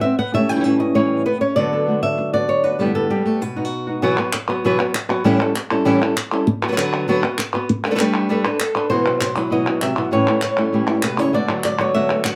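A mournful, intense flamenco fragment at a brisk 197 BPM in straight 4/4 opens with two fingerpicked acoustic guitars: an up-front lead with audible finger squeak carries the melody, while a dark, woody second guitar on old strings plays chordal stabs over a cycle of A7, D6, Gadd9 and Bsus4. The stabbing guitar drops out at 4.0 seconds, just before crisp, compressed and saturated palmas hand claps enter up front at 4.2 seconds, then returns at 8.9 seconds. A moderate small-room reverb places the performance in an intimate space.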